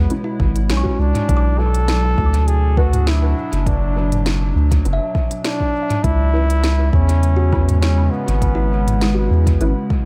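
A lightly reverberant, echo-heavy mix opens this hazy, spacious slice of ambient dub, cut from a longer piece and unfolding over a lightly swung groove. A close-miked trombone carries the melody in a warm, classical style, its phrases trailing into dub echo. Beneath it, a warbling, nostalgic pad holds lo-fi sustained chords with chorus and its own reverb. In the background, a woody, hollow-sounding kalimba plucks vintage, band-limited arpeggios roughened by 12-bit sampler grit and analog delay, while a muted, detuned chord stab from 0.1 seconds adds filtered plucks through phaser, ensemble chorus and dub echo. The low end rests on a round, soft sub bass sitting up front, a deep tape-toned electronic kick entering at 0.4 seconds, and an electronic kit of woody snare, crisp hats and toms that carries dub echo, both drum parts re-recorded in a large room, as the harmony moves from C#m7 to Bm and back.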